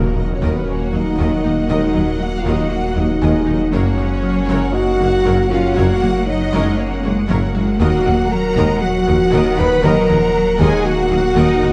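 A mellow French horn section holds sustained chords at the front of this tense, futuristic cinematic cue, a hybrid orchestral and electronic film score in Eb minor at 118 BPM. Beneath it, a thick, saturated detuned saw bass and a roomy solo tuba carry the low end, joined by lush double basses and, from 0.7 seconds, a focused cello section. A background electronic impact sounds until 1.7 seconds, and the harmony moves from Eb minor to Gb at 3.7 seconds and back. Two bowed violin sections with vibrato spin a distant melody over a smooth-topped second line, with intense violas accompanying. Glassy, crystalline wavetable pluck arpeggios, a shimmering, retro pulse-width pad and a soft, felt-muted upright piano with audible action noise add very quiet texture, all set in a dark, reverberant scoring-stage sound.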